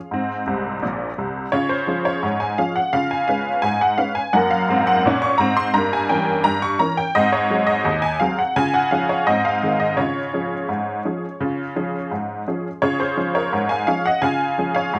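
A detuned, jangly honky-tonk upright piano carries this playful, cheerful ragtime piece alone, sitting up front in a moderate studio reverb and opening with a quick fill at 0.5 seconds. Set in a straight 2/4, it moves through a sunny progression that passes a diminished chord before settling home, then starts its opening section again at 12.8 seconds, just before this cut from a longer piece ends at 15 seconds.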